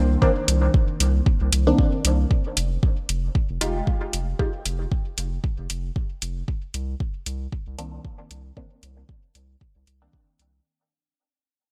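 A dark, detuned sawtooth pad with chorus and 12-bit grit sits in the background under nasal, filtered dub chord stabs drenched in phaser and dub echo, all pumping against a round, sine-like bass as this hypnotic dub techno piece opens at 115 BPM in F minor with a 16th-note swing. The pad drops away at 2.3 s as the harmony moves from Cm9 to Fm9 and a fade-out begins, and the up-front deep kick and metallic hi-hats drive on. Meanwhile the stabs pause and return at 7.8 s over a Cm9 chord, all set in light reverb with a bright 1980s-style digital sheen.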